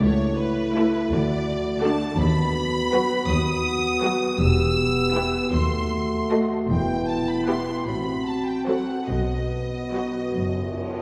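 A dark, distant French horn section holds solemn sustained chords over a slow, rubato 6/8 classical passage of about 47-56 BPM. Above it a smooth, vibrato-laden violin section carries the melancholic melody, while soft-attack second violins and rich violas enter at 0.8 s with a background line and accompaniment. Lush cellos and full-bodied bowed double basses anchor the bass in E minor-leaning harmony that closes on B, all bathed in a wet church reverb.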